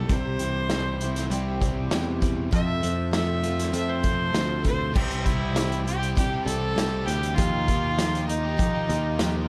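Jangly and warm, this folk rock and heartland rock excerpt moves at 99 BPM in a straight 4/4, with a rich, smooth fiddle carrying the melody up front with light vibrato and a slapback echo, soloing through the first 5.0 seconds. Underneath, a full-bodied picked dreadnought acoustic guitar and a crunchy, double-tracked overdriven electric guitar riff sit in the background, while a reedy, very quiet accordion holds sweet sustained chords. A direct picked electric bass and a punchy vintage drum kit with dark cymbals and a pumping small-room sound drive the changes from C to F, then back to C and a closing Ebadd9.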